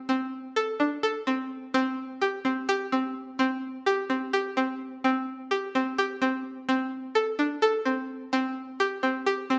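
A twangy, nasal resonator pluck with a string-like tone plays alone from 0.1 s to 9.6 s in this short cut from a contemporary instrumental piece, moving in an urgent, hypnotic 7/8 with a straight feel. Its bright, up-front sound has a fast attack that then decays, a sawtooth edge with a noise layer, a filter sweep and chorus. Close, detailed microphones catch the part within a moderate recital-hall reverb.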